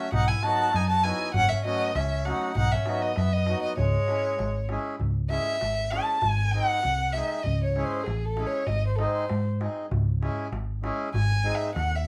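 Virtuosic and fiery, this Balkan wedding-band excerpt moves at 98 BPM in a straight 2/4, set in C# minor with a turn to C# harmonic minor at 5.0 seconds. A dark, woody violin carries the melody up front throughout, bowed sul tasto with vibrato, and from 5.0 seconds it takes a solo over chords that alternate between G# and C#m. Beneath it, a roomy, distant trumpet plays a second line in a classical style with light vibrato until 4.7 seconds. A reedy, smooth accordion holds the accompaniment, while a round, punchy hollow-body electric bass sits up front with an amped edge. A deep clay-shell darbuka with natural skin, played with soft hands, gives a vintage, band-limited pulse. The group plays live in one room, and the recording has a wet studio ambience.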